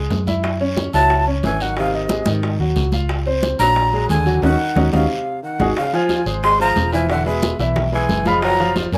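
Afro-Cuban jazz at a brisk 180 BPM, sophisticated and danceable, this opens with a clear, woody upright piano accompanying a dark, round hollow-body electric bass up front, while ringing congas and soft-handed, low-tuned bongos sit in the background and a raspy, saturated guiro adds texture. At 0.9 seconds an airy, crisp-attacked jazz flute takes the melody up front, with a growling, gritty tenor saxophone carrying a low second line beneath it. A band accent from 4.4 seconds and a drum fill from 4.8 seconds lead into a new section at 5.8 seconds, heard in a moderate club reverb.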